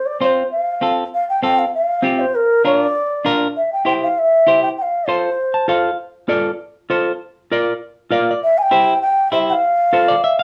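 Latin tune at a brisk 198 BPM in F major, joyful and sunny, with a pure, bamboo-toned bansuri carrying the tongued, expressive melody up front through a plate reverb, pausing at 5.8 seconds before returning at 8.4 seconds, while a clean, picked semi-hollow electric guitar with a hollow-body warmth supplies the accompaniment and brief fills over an F, Bb and C progression, all set in a lively studio room heard from a little further back in this cut from a longer piece.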